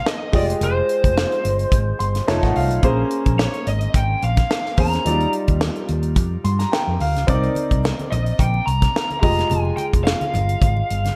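A glossy studio sound with light reverb frames this urban slice of polished 1980s jazz-funk pop, moving at 108 BPM in 4/4 with a 16th-note swing. A tight, acoustic funk kit with a high-tuned snare and gated reverb sits up front beside a dark, round fretless bass treated with subtle chorus, while a clear grand piano with analog chorus accompanies and adds fills at 1.7 and 6.2 seconds. A dark, lo-fi overdriven lead guitar carries the picked melody over chords moving from Fm9 through Bbm9, Ebmaj9 and Cm9, and very quiet, bright congas join at 7.3 seconds in this excerpt.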